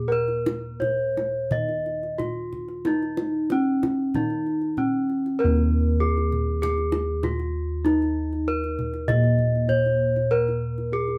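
Serene and ceremonial, this short Javanese gamelan excerpt in Eb slendro moves at 83-98 BPM in a straight 4/4, with a bronze metallophone carrying the ringing melody under wooden mallets, up-front bossed gongs supplying a round, beating, close-miked bass, and a tight kendang joining at 0.3 seconds, all captured live in one room with moderate studio ambience.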